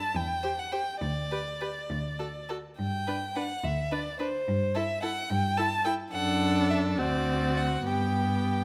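A focused, vibrato-rich first violin carries the melody up front in this lively, spirited excerpt of a quick classical-period movement for string quartet, played in 6/8 with a flexible rubato feel. Beneath it a clear second violin traces a smooth second line, the viola supplies even accompaniment, and the cello anchors the bass, each part bowed by a single player. A moderate recital hall reverb surrounds the quartet as the harmony passes through D7 and settles on G at 7.9 seconds.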